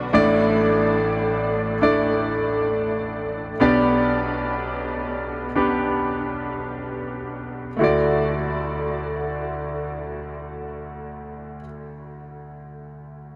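A bright grand piano opens this hopeful, emotional pop fragment in D major, sitting up front with a brilliant, natural tone and a lush chorus as it accompanies through Asus4 and G/B chords, the tempo slowing between 51 and 72 BPM in 4/4 until 7.8 s. There a new section begins on a Dadd9 chord, and the piano carries on until 13.4 s. A huge ambient reverb with an 8.2-second tail soaks the dreamy mix.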